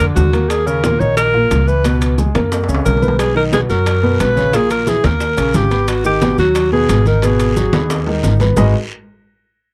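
Afro-Cuban jazz at a driving 178 BPM in 4/4 with a straight feel, this short cut from a longer piece in G# minor has a sultry, forward-pushing mood. The alto saxophone carries the melody up front with a soft attack and scooped notes in a jazz solo style, while the clear concert grand piano, deep in its low end, supplies the accompaniment through changes that move from Badd9 to Emaj7#11/A# and on to D#7 and G#m7. The woody, thumpy pizzicato upright bass sits up front alongside the saxophone, giving the groove a warm, steel-string weight. A dense bed of hand percussion surrounds them: ringing metal-shell timbales in the background, round, saturated bongos struck with hard hands, very quiet bright congas entering at 0.2 s, grainy maracas, and a raspy guiro that joins at 3.2 s. Drum fills arrive at 2.5 s and 7.7 s, and the whole piece has the dry, close sound of a 1970s-style studio recording with light reverb.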